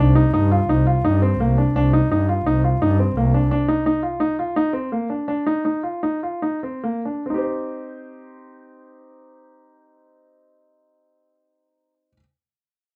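A bowed double bass with a nasal, airy tone sits close and up front beneath clear, vintage-sounding grand piano arpeggios on Cmadd9, opening this hypnotic, pensive chamber piece in 5/4 and C minor at 141-171 BPM, tuned to A4 = 438 Hz. The bass drops out at 3.5 seconds, leaving the short-sustained piano alone as the tempo slows from 4.2 to 7.3 seconds, where the harmony settles onto C minor. Light reverb and a dark, warm production frame this excerpt, which runs to 12.2 seconds.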